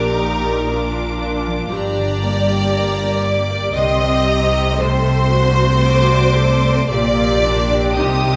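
Classical slow romantic orchestral movement in an elegiac, melancholic mood, flowing with rubato in three-four, where a close, smooth violin section sings a high vibrato melody above a focused, up-front second violin line, lush violas supply the accompaniment, a bright, ringing concert harp spins arpeggios in the background, and distant cellos join warm bowed double basses on the bass, the excerpt set in the wet reverb of a recital hall.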